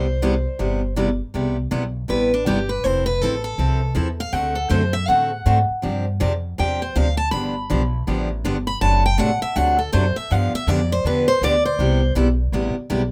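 A bright, freshly strung steel-string acoustic guitar, with audible finger squeak, carries a lively, playful solo from 1.3 seconds in this short cut of acoustic string swing (jazz manouche) at 161 BPM in C major, backed by a full-bodied second acoustic guitar on accompaniment and a woody, thumpy pizzicato upright bass, all up front under light reverb as the chords move from Cmaj7 through D7 and G7 back to Cmaj7.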